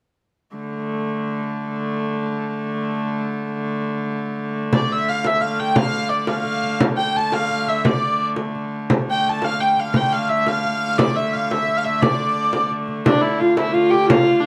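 A driving, mysterious medieval dance in a straight 6/8, heard as a short cut from a longer piece, opens with a rich, nasal hurdy-gurdy drone sounding alone until 4.7 seconds. There a second hurdy-gurdy takes up the melody with an earthy tone and plate reverb, joined by a small, bright frame drum with a vintage, band-limited character. A breathy soprano recorder with audible chiff and rolled-off highs adds a second line from 13.1 seconds, all set in a light reverb.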